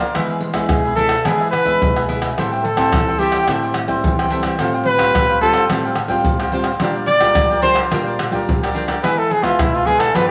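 Samba and choro at 108 BPM in a straight 4/4, this festive, lively clip is cut from a longer piece and sounds like a home cassette recording bathed in a wet spring reverb. A trumpet carries the melody from 0.7 seconds, played with light vibrato in a jazz style and sitting up front as a solo between E4 and D5. Beneath it, a bright, crisp picked cavaquinho and a fingerpicked classical nylon-string guitar supply the accompaniment, both with a cassette tape coloring. Maracas, a tight surdo, pandeiro and tamborim fill out the percussion, played with soft hands in a live room and placed close to the listener. The harmony moves from E through Am7, Fadd9/A and Bb6 before returning to E near 9.0 seconds.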